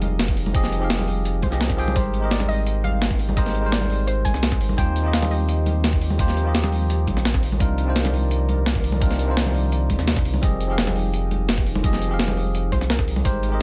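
A dry, close sound carries this soulful, lush liquid drum and bass passage, cut from a longer piece. A bright, bell-like tine electric piano with delay plays over a breathy, very quiet pad and a deep, round sine sub bass, while a soft pluck with chorus and dub echo carries the melody in the background, dropping out at 6.3 seconds and returning near the end. A gritty, overdriven sampler-style breakbeat of hi-hat and snare sits with a layered, knocking electronic kick that enters at 0.3 seconds, vintage congas in the background and a faint electronic swell at 7.0 seconds.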